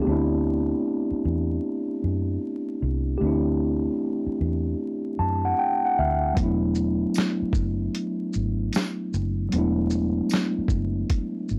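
Lo-fi hip hop with a mellow, dreamy swing, built on a mellow tine electric piano softened by a low-pass filter and plate reverb, over a dark, round, foam-muted electric bass, with the piano slipping in a fill from 4.8 to 6.4 seconds. At 6.4 seconds a compressed, pitched-down sampler-style drum kit arrives with a thumpy kick, shaker and 12-bit grit as the harmony moves from D9sus4 to E9sus4, and a jingly tambourine sits in the background from 7.1 seconds. The whole cut has a dry, gritty hardware sound in a small room, dusted with vinyl crackle.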